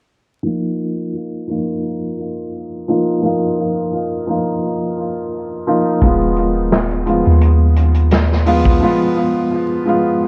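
This trip hop excerpt has a hypnotic, smoky mood and a swung sixteenth-note feel. A dark upright piano opens at 0.4 seconds as the accompaniment, its mellow, woody tone colored by harmonic tremolo, tape echo and a low-pass filter that sweeps throughout. At 6.0 seconds a soft 808-style bass and a swinging big-band drum kit join. The bass is deep and round, with a fast attack that decays. The kit sits in a roomy, distant studio space, with a punchy kick, a medium-tuned snare and hi-hat. Both drop out at 8.8 seconds, leaving a break for the piano, while the echo-heavy mix, vinyl crackle and light reverb give the whole track a hazy, dusty finish.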